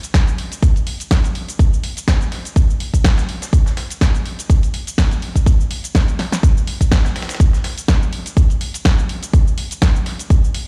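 A house drum kit with a punchy snare, bright hats and shaker opens this feel-good, uplifting house excerpt at 124 BPM in 4/4 with a light 16th-note swing, layered beneath it with a very quiet, gritty sampler-style soul kit whose fat snare adds dusty grit. A layered electronic kick sits up front from 0.1 seconds, and after a drum fill at 6.2 seconds the groove drops at 6.4 seconds. The sound carries a light reverb and the stone room reverb of a big sound system playing in a bare room.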